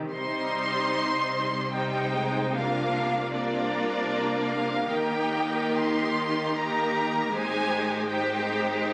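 Lush, up-front bowed violins carry a focused, smooth-topped melody with vibrato over a second violin line, clear violas and even, rich cellos, while distant, lightly vibrated double basses sit in the background of this serene, tender slow romantic movement for string orchestra in C minor, moving in a rubato 3/4 at about 75 BPM through Cm, Bb/C, Eb and Abmaj7, heard through a phone in the room with moderate stage reverb and a club-like ambience.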